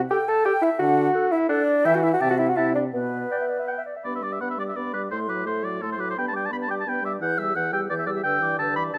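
A quick classical-period movement for wind quintet in G major, this cheerful, graceful passage moves at 171 BPM in 3/4 with a flexible, rubato feel, cut from a longer piece. The silver concert flute carries the melody high above the ensemble, its airy, metallic tone shaded with vibrato and a soft attack that makes the line sound expressive. Just beneath it, the oboe sings a second line with a light vibrato, sitting up front in the mix, while the bassoon anchors the bass from low to surprisingly high, its vintage, slightly band-limited colour also placed close. The French horn and a dark clarinet fill in the accompaniment from further back, both sounding distant and roomy. Close, detailed microphones and light reverb frame the quintet as the harmony moves from D through Em and Am/C back to G, with the opening idea returning at 4.1 seconds.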